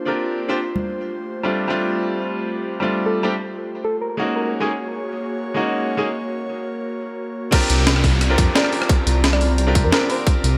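Light reverb gives this dreamy, melancholic liquid drum and bass fragment an open, misty sound, cut from a longer piece and moving at 175 BPM in 4/4 with a gentle swing on the sixteenths. An airy, breathy pad holds sustained chords with a slow attack and long release, its chorus lending a soft shimmer, while a brilliant grand piano, up front and trailed by digital delay, carries the accompaniment over sus4 harmonies that move from C to G to Ab. A single soft-handed conga hit appears early, and a round, keys-like FM lead with chorus and delay sings brief gentle phrases, first at 3.1 seconds. After a short break, the drop lands at 7.5 seconds, bringing in a tight, overdriven electronic kick and a gritty, pitched-up breakbeat kit with a high-tuned snare, hi-hat, rim clicks and crash. A deep, rumbling detuned saw bass enters just after, with a beating, dark low end, and an electronic downlifter sits in the background as the lead returns near 8.6 seconds.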